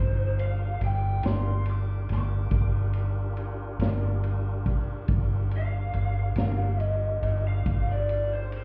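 An overdriven lead guitar through a small cranked amp carries a picked solo melody from C5 to D6 across this smoky, brooding slow blues fragment, its lo-fi tone trailed by tape echo. The piece sits at 47 BPM in a straight 12/8 on a single Gm7 chord, with a round, foam-muted fingered electric bass holding G1 up front as the loudest part. A vintage drum kit enters at 0.4 seconds with a punchy kick, a medium-tuned snare and dark ride cymbal, its top rolled off in a mid-forward studio-room sound. Beneath them a fat tonewheel organ sustains chords through a fast rotary speaker, lightly overdriven, with vibrato and key click. From 1.2 to 6.6 seconds a second electric guitar adds compressed, slightly broken-up accompaniment in the background, shimmering with harmonic tremolo. The whole fragment is fairly dry, with a touch of club ambience, and sounds muffled as if heard through a wall, giving it a hazy, late-night feel.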